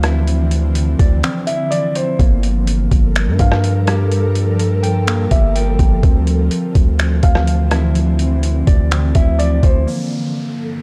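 A half-time 4/4 groove drives this hazy, melancholic cloud-rap excerpt, built on a pitched-down, overdriven boom bap sampler kit of thumpy kick, rim click, hi-hat and finger snaps, set up front beside a long, deep 808-style sine bass carrying transformer saturation. A brief break falls between 1.2 and 2.2 seconds. Above them, an ethereal, airy pad holds detuned unison chords moving from Dm9 to Gm9, colored by ensemble chorus, tremolo, built-in reverb and sidechain pumping. A felt-muted upright piano plays a soft, intimate melody through tape echo, while a dark, clean electric guitar adds fingered arpeggios, also treated with tape echo. The drums stop at 9.7 seconds and an electronic downlifter fills the closing moments as pad and guitar carry on, all within a dry, gritty hardware sound.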